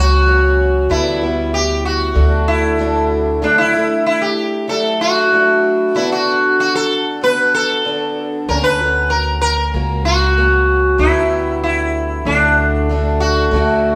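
A buzzing, plectrum-plucked sitar with shimmering sympathetic strings carries the gentle, peaceful melody up front in this D major acoustic folk piece at 95 BPM in a straight 4/4, over a boxy, octave-doubled twelve-string guitar whose picking carries some finger squeak, while a woody, growly pizzicato upright bass drops out at 3.4 seconds and returns at 8.5 seconds, the small band playing live together in a large room washed in wet studio reverb.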